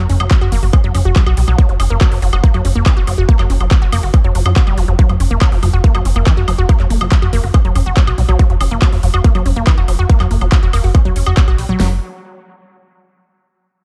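Intense and driving, this psychedelic trance excerpt in F# major runs at 141 BPM over a straight 4/4, with a punchy, funky sawtooth analog bass sitting up front and carrying a filter sweep, a bright, detuned unison pluck riff pumping with sidechain and trailing dub echo, and two overdriven big-room dance drum layers, one with a huge snare and punchy kick, the other adding handclaps and woodblock over metallic hats, all in a dark, dry production that hangs on an F#5 power chord until 11.8 seconds, shortly before the kit drops out at 11.9 seconds.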